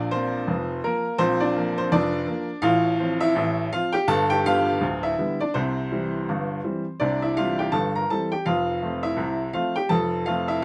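Ragtime piano in F major at 83 BPM in 2/4, with a cheerful, jaunty lilt from a 58% swing on the sixteenths, in a short passage cut from a longer piece. A solo upright piano with a woody, open tone sits up front, ranging from D1 to Bb5 as the harmony moves from Bb through F/A, G7 and C before settling on F at 8.4 seconds. Close, detailed miking and light reverb keep the sound clear and present.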